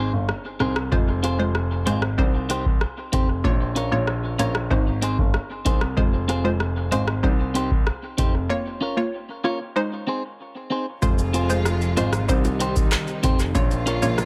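Tough, sultry dancehall in F minor at 95 BPM, cut from a longer piece, where a hollow, detuned square-wave pluck with chorus and a clean, scooped electric guitar playing arpeggios through dub echo sit over a dark grand piano carrying the bass with audible action noise, while a booming analog drum machine with deep kick, metallic hats, handclaps, rim clicks and shaker has its own dub echo, lush bowed strings with sidechain pumping arrive at 11.0 s, and very quiet, low-tuned bongos join at 11.7 s in an echo-heavy mix with light reverb.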